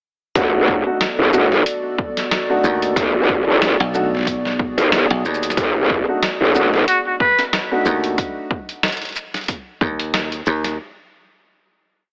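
Swaggering and funky, this short glitch hop piece at 92 BPM in B dorian runs as one drop from 0.4 s, opening on a B7#9 chord with an overdriven electronic kick, a gritty, pitched-down sampler-style kit of closed hat, snares and shaker in a swung beat with edits, and an aggressive growl bass with overdrive and chorus, its wobble speed changing from phrase to phrase. A dark grand piano plays syncopated, rootless chord stabs with 12-bit sampler grit and digital delay over a moody, detuned analog pad with chorus, both pumping to the sidechain, while a dry, foam-muted slap bass joins at 2.6 s with chopped phrases answering the growl. A vibrato-laden trumpet with digital delay cuts in for a short answering phrase at 6.9 s, and the whole track carries a light reverb and an AM radio sound.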